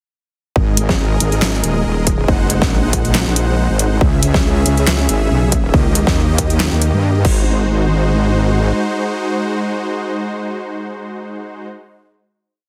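A heavily compressed, radio-like sound with light reverb frames this short, aggressive and chaotic heavy wobble dubstep piece, which drops in at 0.6 seconds on a swung, half-time beat. A saturated, detuned sawtooth wobble bass with chorus and overdrive carries modulated phrases with changing wobble speed up front, over a punchy overdriven kick and a layered drum kit with a deep snare, handclaps, closed hi-hat and crash, both re-recorded in a small room. Huge, lush supersaw chords pump against the sidechain through G#sus2, G#7, C#m and D#, then sustain through the final hit, lingering until 11.7 seconds.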